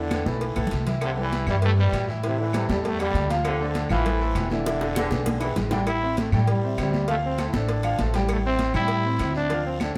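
Passionate and fiery, this 198 BPM salsa excerpt in A minor puts a raspy, growling trombone solo up front over a brilliant grand piano, a thumpy gut-string upright bass played pizzicato, background congas, tight cowbell and bongos, ringing timbales and agogo bells, a raspy guiro and faint woody claves, while a very quiet vintage trombone section adds a loose second line from 1.0 to 5.8 seconds, all set in wet studio reverb heard from further back in the room, with drum fills at 0.6 and 4.7 seconds.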